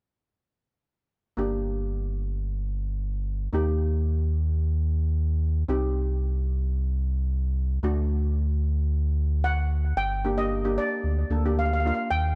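In a boxy small room with light reverb, this cool, brooding calypso excerpt in G minor at 112 BPM begins at 1.4 seconds with metallic, shimmering cello pans on hard rubber sticks and a deep, full sub bass with octave, built from sine and triangle tones, moving through Gm, Eb, Cm and D, before a mellow, soft lead pan on soft rubber sticks, carrying analog delay, takes the melody at 9.4 seconds and the cello pans stop at 12.1 seconds.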